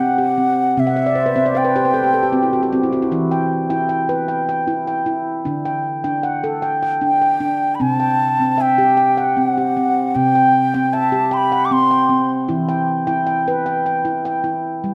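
World music in a meditative, gentle mood, this short excerpt moves at 77 BPM in a straight 3/4. A ringing handpan plays arpeggios throughout, its stainless-steel tone mellow and mid-forward under soft fingertips, and it adds a fill between 0.9 and 3.1 seconds. A reedy bansuri carries the melody in two phrases, the second arriving at 7.0 seconds, its airy bamboo voice close-miked with a soft attack, vibrato and a trail of tape echo. Both instruments sit up front, wrapped in the wet reverb of a recital hall layered over a small room ambience. The harmony drifts from C through Em and D, returning to C and settling on Em near the end of the cut.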